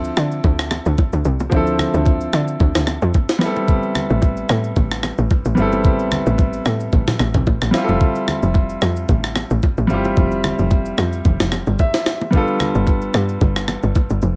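Soulful and hypnotic, this amapiano excerpt moves at 111 BPM in 4/4 with a 55% swing on the sixteenths, sitting in D dorian. A smooth, vintage grand piano plays up front as accompaniment through chords that shift from Dm9 to Am7, Fmaj7 and finally G9, with a brief piano fill between 11.5 and 12.3 seconds. Underneath, a tight, punchy log drum bass with an FM character, a noise layer, a fast attack and decaying notes carries the low end, also placed up front. The sampler-style drum kit is compressed, pitched up and gritty, with a thumpy kick, a high-tuned snare, rim clicks, shaker and toms, sounding as if re-recorded in a small room. Ringing acoustic bongos and congas, played with soft hands, sit close and dry in the background, and the whole mix carries little reverb.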